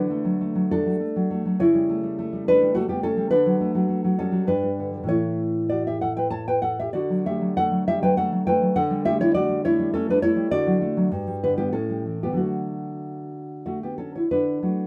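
A lone nylon-string guitar opens on a D major chord, its dark, full-bodied tone placed up front in the sound. This is a tender, romantic piece for solo classical guitar in 3/4, played with a rubato feel that lets the phrasing breathe. The thumb-plucked sound has a deep classical character, spanning from G2 up to A5. The harmony moves gently through D, A7/C#, G and A, settling back on D around 6.9 seconds before passing through A7/D and returning home on D at 12.4 seconds. Light reverb adds a soft sense of space to this warm passage, which is cut from a longer work.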